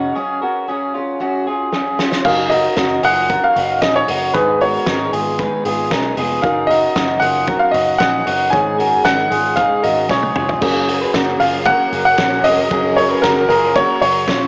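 Jangly indie pop at 115 BPM in a breezy, nostalgic mood, this excerpt is led by a bright, woody upright piano melody with audible action noise and cassette-tape color. Beneath it sit a full-bodied picked steel-string acoustic guitar, twangy, slightly broken-up electric guitar arpeggios with analog delay, and a dark, foam-muted electric bass. A loose drum kit with a fat snare enters at 1.7 s with a fill, a reedy, worn electric piano joins at 2.2 s, and a very quiet bowed string section with vibrato and portamento arrives at 10.6 s, all in moderate spring reverb with a home-cassette, small-speaker sound over chords moving from Gbsus2 through Abm to Gbadd9.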